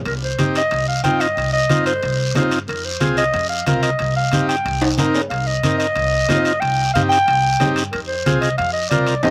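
A woody, dark pizzicato upright bass opens this passionate, driving cumbia excerpt in C minor at 183 BPM, joined at 0.1 s by a gritty, growling jazz-style clarinet solo up front with light vibrato and slapback echo, bright low-tuned congas, a raspy guiro and ringing metal-shell timbales with slapback echo in the background, while a buzzy vintage combo organ adds echoed accompaniment from 0.4 s over Cm and Fm chords, with a drum fill at 4.8 s, all captured dry in an outdoor setting.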